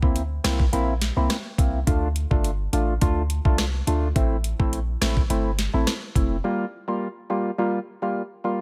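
Bouncy and hypnotic, this dancehall excerpt at 105 BPM in D minor sets a hollow, nasal organ stab with chorus over a deep, boomy 808-style bass and an up-front electronic drum kit with a knocking kick, sharp snare and metallic hats, moving through C7, Dm and Am before the drums drop out at 6.3 seconds and the bass at 6.4 seconds, leaving the organ alone on Gm7 until 8.6 seconds.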